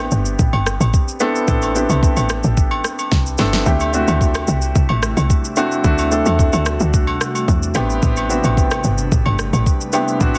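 A straight 4/4 amapiano groove is carried by an electronic R&B-style kit with a soft kick, fat snare softly clipped, rim click and shaker, joined at 0.5 seconds by acoustic agogo bells, while a tight, punchy log drum bass thumps out fast-attack, decaying notes beneath. A warm, natural baby grand piano sits up front comping on Am11 and D9sus4 chords, giving this late-night, deep excerpt its center. After a drum fill at 3.1 seconds, a glassy, ethereal FM pad with a warbling vintage chorus and built-in reverb arrives at 4.0 seconds in the background, pumping under the sidechain against a dry, dense, heavily limited mix.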